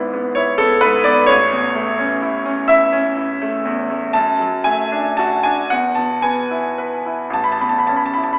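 A brilliant, up-front grand piano carries this nostalgic, dreamy romantic nocturne alone, spanning G#1 to B5 in A major at a slow 35-44 BPM in 12/8 with a rubato feel. Its harmony moves from E7/G# to A, D/F# and E before settling on A at 7.3 seconds. A wet recital hall reverb surrounds the natural piano tone, while an AM radio sound colors the recording of this 8.4-second fragment of a longer piece.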